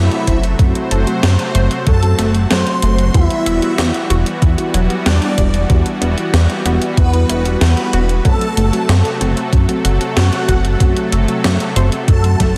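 Synthwave cut from a longer piece, moody and driving in a straight 4/4, where a smooth, vibrato-laden synth lead carries the melody through chorus and tape echo over a shimmering string machine line, a lush detuned unison pad and a dark chorused synth bass that both pump with sidechain alongside a thumpy electronic kick, while a round analog pluck arpeggiates and a mellow FM electric piano stabs in the background, gated 80s drum machine hi-hat, snare and toms run from the start, and a drum fill arrives at 12.4 seconds, all moving between F#dim and Emadd9 in a dense, heavily limited mix.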